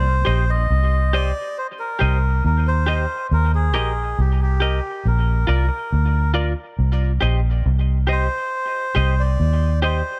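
Reggae at a slow 69 BPM in C minor, this hypnotic, meditative excerpt cut from a longer piece moves from Cm to Bb around 5.0 seconds and back to Cm at 6.8 seconds. A dark, round, punchy muted electric bass sits up front, while a reedy, breathy melodica carries the melody through tape echo. A clean, compressed semi-hollow guitar adds accompaniment from 0.2 seconds, treated with lush chorus and tape echo, all within a light reverb.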